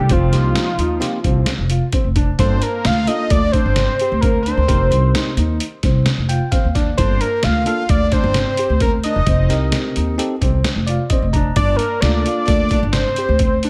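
An echo-heavy mix with light digital ambience frames this short cut from a longer progressive instrumental, a driving and intricate piece in an uneven 5/4 metre with a straight feel. A fat, detuned analog lead carries the melody up front, its sawtooth and square tones coloured by phaser, vibrato and tape echo over a sub octave. Beneath it, a woody pizzicato upright bass sits close alongside a gritty, pitched-down trip hop sampler-style kit with a thumpy kick and medium-tuned snare, compressed and re-recorded in a small room. A concert grand piano plays arpeggios with a deep, open, long-sustained tone, while a bell-like tine electric piano adds bright, clean accompaniment through tape echo, with brief fills at 6.1 and 10.6 seconds. The harmony alternates between F7sus4 and Gm7 throughout.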